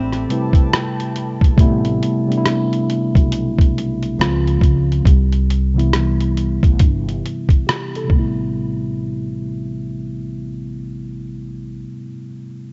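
A slow 69 BPM groove in 4/4 with a lazy swing on the sixteenths sets this reflective, melancholic lo-fi hip hop excerpt in A minor, driven by a compressed, pitched-down sampler-style drum kit with a thumpy kick, hi-hat and rim click up front until 8.4 seconds, beneath a woody, dark pizzicato upright bass. A mellow tine electric piano with a cassette-tape tint carries the accompaniment through chords moving from Am9 to C#maj7 and Cmaj7, while a brief fingerpicked nylon-string guitar phrase with finger squeak and tape echo opens the piece alongside a warbling, detuned pad with chorus that ends by 1.6 seconds. The whole recording sits dry and muffled, its cassette sound rolling off everything above 7.8 kHz.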